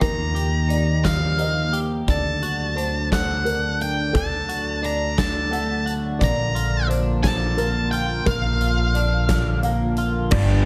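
An octave-fuzz lead guitar sits up front with a dark, fuzzed melody in a high register, its distortion trailed by slapback echo, carrying this melancholic, cinematic post-rock excerpt in 6/8. Beneath it, a woody pizzicato upright bass with steel strings is also up front, while a huge arena drum kit fills a big room with a punchy kick, a medium-tuned snare, hi-hat and crash cymbal. A clean, compressed twelve-string electric guitar and a soft, felt-muted upright piano, boxy and intimate with audible action noise, both play arpeggios touched by slapback echo, the piano sitting in the background. A warbling, nostalgic lo-fi pad of detuned sawtooth and triangle tones holds slow-attack chords with chorus and its own reverb as the harmony moves from Ebadd9 to D and then Bb. At 10.3 seconds a bright, distorted electric guitar riff cuts in just as the passage ends, and the mix sits in a small room reverb.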